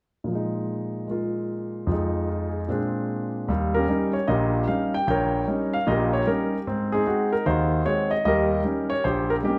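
Relaxed, this short solo jazz excerpt swings at 151 BPM in 4/4, with a lilting eighth-note feel in E-flat mixolydian. A warm concert grand piano carries everything alone, sounding intimate and natural and sitting up front, with deep bass, long sustain and the audible noise of its action. The harmony moves from Bb7sus4 through Fm7 and Bb9 before settling onto Eb7 at 3.5 seconds, then Ab7 and back to Eb7, all set in a moderate large-studio reverb.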